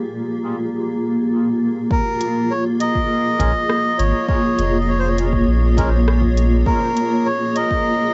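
A fragment of spacious, deep ambient dub at 101 BPM in Bb dorian opens with a bright, cloudy granular pad of detuned, evolving chords bathed in its own reverb; at 1.9 seconds a reedy, nasal wooden-cased melodica carries the melody up front through dub echo over an overdriven electronic kick re-recorded in a large room, soon joined by a produced electronic kit of crisp hi-hats and rim clicks; and from 3.4 seconds a breathy, plastic-cased melodica adds airy background stabs, also treated with dub echo, while a round, tube-saturated sub bass sits up front, all captured on a home cassette recording.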